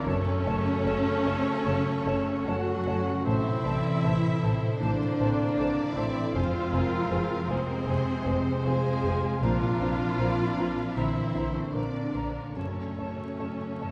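Bittersweet and sorrowful, this rubato cinematic orchestral excerpt sets a background violin section carrying the melody over a mellow cor anglais, a rich soft-attack second violin section, an airy silver flute and a very quiet clear clarinet as second lines, with a felt-muted upright piano whose action noise is audible, portamento violas, a very quiet thumb-plucked ringing harp, dark distant French horns, and lush bowed cellos and focused double basses beneath, all heard from further back in a wet concert hall with vinyl crackle and a dulled top end as the harmony drifts from F#m through Am, Fm and Bbadd9 back to F#m.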